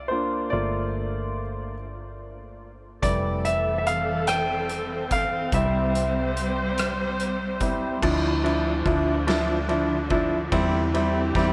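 This romantic six-eight pop ballad sways in a slow triple lilt, a short passage cut from a longer piece and bathed in a huge, dreamy reverb. A clear, polished baby grand piano sits up front carrying the accompaniment, with a round, punchy hollow-body electric bass beneath it from the first moment, moving through chords such as C7sus4, Gm7 and Fmaj7. At 3.0 seconds a studio string section joins with smooth, bowed sustained chords full of vibrato and expressive portamento, while a loose, distant indie drum kit enters with a fat snare, punchy kick, rim clicks and dark, rolled-off cymbals. At 8.0 seconds the music shifts to a new passage over Dmadd9, and a very quiet, dark French horn section adds a gentle second line with light vibrato. The roomy kit and dark horns stay tucked behind the present piano, giving the whole passage a soft, floating glow.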